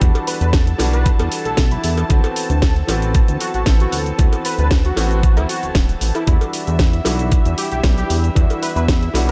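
Nu-disco at 115 BPM in E minor with a cosmic, sensual mood, this short excerpt sets a gritty, thumpy electronic kick up front beside a glossy pulse-width synth bass, a house kit with a cracking snare, hi-hat and shaker, a background cowbell from 0.2 seconds, a clear concert grand piano with audible action noise, sidechain pumping and a touch of slapback echo, a lush detuned unison pad with chorus, and a nasal, warbling unison lead entering at 0.3 seconds through cassette-tape coloring and tape echo, all moving from Em9 to D13 at 2.1 seconds and back at 6.3 seconds in a dry mix.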